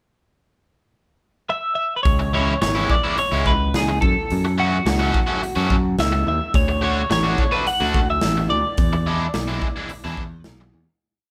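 This short indie rock piece is upbeat and carefree, moving at 107 BPM in a straight 4/4. A clean, compressed twelve-string electric guitar opens alone at 1.5 s during the pickup bar, picking a motif-based melody built from period phrases. At 2.1 s the verse begins and the drums and bass arrive. A big rock drum kit brings a punchy kick, a medium-tuned snare and hi-hat in a big-room groove, and a modern picked electric bass plays a syncopated riff with a direct, bright tone. A moment later, at 2.2 s, a biting, double-tracked overdriven guitar adds short syncopated chords. The band sounds live in one room with light reverb as the chords move from C#m through F#m and D to E7, and the piece fades out from 8.8 s.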